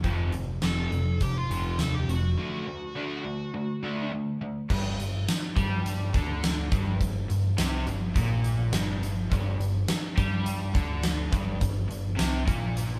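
Classic rock at 104 BPM in G minor, gritty and driving, with a dark, double-tracked overdriven semi-hollow guitar riff and a huge arena drum kit, complete with bright cymbals, fat snare, punchy kick and tambourine, up front, a growling picked electric bass underneath, and a smooth overdriven lead guitar melody heard only from 0.6 to 4.1 seconds, all played live in one room with moderate large studio reverb, moving from F through a break on D at 2.4 seconds to G minor at 4.7 seconds in this cut from a longer piece.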